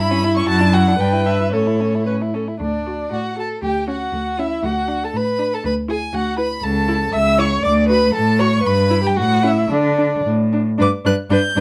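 In a lilting two-beat metre played with a flexible, rubato feel, this quick classical-period movement for string quartet sounds graceful and cheerful, and it is cut from a longer piece. Four bowed players, each with a rich, vibrato-laden tone, sound together throughout. The first violin carries the high melody from a slightly distant position with an even, silky line, while the second violin supplies a focused supporting part beneath it. The viola sits close, filling in the accompaniment, and the cello grounds the ensemble with a bass line placed up front in the mix. The harmony moves through gently shifting chords, including a Dmaj9 and an E9 over D, with a new passage opening at 2.6 seconds and a G chord arriving at 10.8 seconds. Light reverb and a dark, warm production give the quartet a mellow sheen.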